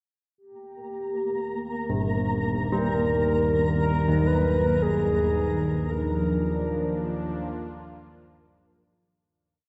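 A cavernous space with a huge, moderately applied reverb surrounds this short, complete dark ambient drone piece in Eb major, moving at a slow 55 BPM in 4/4 with a desolate mood. A mellow, round, horn-like synth lead opens at 0.4 seconds, singing a free melody with vibrato, chorus and tape echo near the front of the mix. A flickering, grainy granular texture holds a high note behind it with its own built-in reverb, while bronze carillon bells ring out bright arpeggios through tape echo, their two slow loops of unequal length drifting against each other. An evolving analog drone with a slow attack fades in low beneath them, its pulse-width-modulated sawtooth tone thickened by chorus. At 4.8 seconds an airy, detuned, resonant pad sweeps in up front with a filter swell, moving the harmony from Eb to Bb over Eb as the sound fades out.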